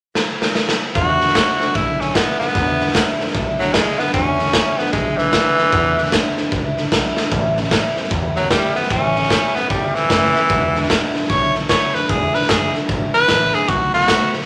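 Rockabilly with an upbeat, rowdy swing, cut from a longer piece, opens on a drum fill before a raspy, forceful tenor saxophone takes the lead up front with light vibrato, moving through E7, A7 and back to E7 before landing on B7 at 13.7 seconds. The raw garage drum kit sits up front too, saturated and gritty with a punchy kick and a pumping stone-room sound, and throws in another fill at 7.1 seconds. Beneath them a bright, full-bodied picked acoustic guitar with audible finger squeak plays the accompaniment, while a woody, growly pizzicato upright bass stays in the background, all inside a moderate large studio reverb.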